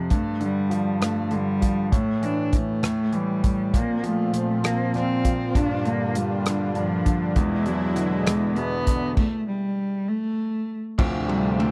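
A warm, bowed cello carries the aching, melancholic melody of this six-eight pop ballad at 66 BPM, its focused vibrato sitting up front over a bright grand piano with long sustain and audible action noise, while a damped 70s drum kit with dark cymbals and a tight kick keeps time. From 3.7 seconds a lush, detuned sawtooth pad with chorus adds thick sustained chords, and after a stop from 9.2 to 11.0 seconds a clean, direct-recorded electric guitar enters in the background with picked arpeggios. The dry, close sound recalls a 1970s studio, and the passage is cut from a longer piece.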